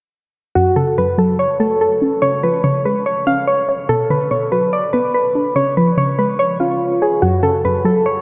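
From 0.6 s, soft electric-piano-like synth keys carry a round, vintage melody with chorus and delay over a warbly dusty pluck's lo-fi, detuned accompaniment with chorus, both dark and up front, in a melancholic, menacing half-time hip hop excerpt that moves through F#m, C#, Bm and C# back to F#m, its dreamy mix soaked in cathedral reverb.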